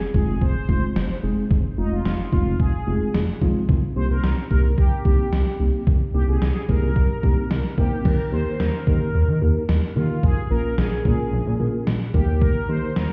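Synth-pop in F minor at 110 BPM in a straight 4/4, with a driving, cool mood, cut from a longer piece. A gated 80s digital drum machine and a smooth gliding synth bass sit up front throughout: the drums bring a thumpy kick, an overdriven gated-reverb snare and crash cymbal with a sampler-style, small-room character, while the sawtooth-and-square bass is detuned and sustained, sliding between notes from F1 to Eb3. A mellow tine electric piano supplies clean accompaniment between Ab3 and Bb4, sounding as if heard through built-in speakers. Over this, a fat, wave-folded analog synth brass carries the melody from Eb4 to C5, bold yet dark, with a filter sweep, vibrato, chorus and digital delay. The chords move from Fm7 to Cm7 in the opening section, then shift to Eb and Bbm when a new section arrives at 8.1 seconds. The whole mix is muffled, as if heard through a wall, with stone-room reverb.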